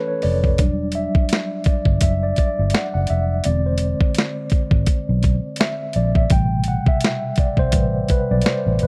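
Smooth and sultry, this neo-soul R&B excerpt in E minor moves at 84 BPM with a gently swung sixteenth-note feel. A mellow, clean tine electric piano sits up front as the solo voice through its built-in speakers, sounding first and moving from a rootless F#m7 through Em9, E7b13 and Am9 chords. From 0.2 seconds a dark, round, foam-muted fingered bass and a gritty, compressed sampler-style drum kit join in, the kit's thumpy kick and medium-tuned snare re-recorded in a large room, all within a dry, close 1970s-style studio sound touched with digital ambience.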